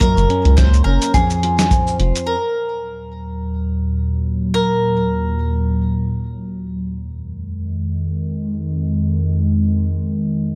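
A detuned, warbling tape-like pad with chorus, phaser and its own reverb enters at 3.0 seconds and carries sustained dark chords through the rest of this wistful, intimate folktronica fragment at 106 BPM with a light 16th-note swing. Before it, a woody, double-strung mandolin picks the up-front melody, which it holds until 6.5 seconds, colored by digital delay. Beneath it are fingerpicked arpeggios on a full-bodied nylon-string guitar, a round, nasal analog bass, a smooth, punchy brushed kick, and a muffled, pitched-down sampler-style kit of cabasa, hi-hat and snare, all of which drop away by 2.3 seconds over chords moving from Gb and Fm to Ebm and Fm7 in a small, dark, warm room.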